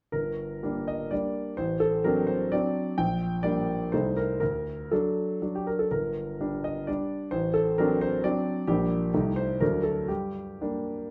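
Capricious and nostalgic, this short classical excerpt is a romantic triple-time dance in 3/4 for solo concert grand piano, its dotted rhythms bending with rubato. The piano sounds clear and natural with a deep bass, placed up front across a range from G1 to G5, while moderate studio reverb lends a modest sense of space. The harmony circles through G minor and its dominant twice in about 11 seconds, settling back on G minor at 10.1 seconds.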